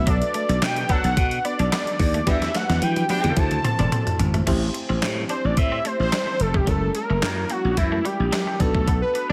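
Funky and danceable, this early-eighties boogie funk clip rides a straight 4/4 groove from a clean 12-bit digital drum machine, its thumpy kick, medium-tuned snare, hi-hat, handclaps, toms and crash cymbal sitting up front beside a growly, punchy slap bass. A fat, detuned sawtooth lead with a sub octave, filter pluck and vibrato carries the melody through slapback and tape echo, then takes a solo from 4.5 seconds. In the background, a glassy, bell-like FM electric piano with chorus and slapback echo supplies accompaniment, while a twangy, slightly broken-up electric guitar plays a picked riff touched with subtle chorus. A mellow, distant horn section adds a tight second line until 3.3 seconds, and a drum fill begins at 2.3 seconds. The chords move from Bm7 through Em7 and D7 to Am7 and F#7 before returning to Bm7, set in light reverb and digital ambience.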